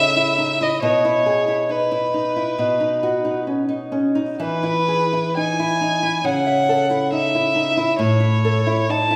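This romantic duo for violin and classical guitar sounds serene and unhurried, moving in a flexible, rubato 4/4 at roughly 59-70 BPM in E major. A single bowed violin carries the melody between B4 and A5, sitting up front with a smooth top, expressive vibrato and gliding portamento. Beneath it, a fingerpicked nylon-string guitar with fresh strings and a small, intimate body supplies the accompaniment across a span from A2 to E5, also placed close to the listener. The harmony drifts from a rootless A/C# through E/B and B to E, then returns to A/C# before settling on A at 8.0 seconds. Both instruments play throughout this 9.2-second passage cut from a longer piece, heard in a resonant church or concert hall whose lingering reverb wraps the duo in a warm glow.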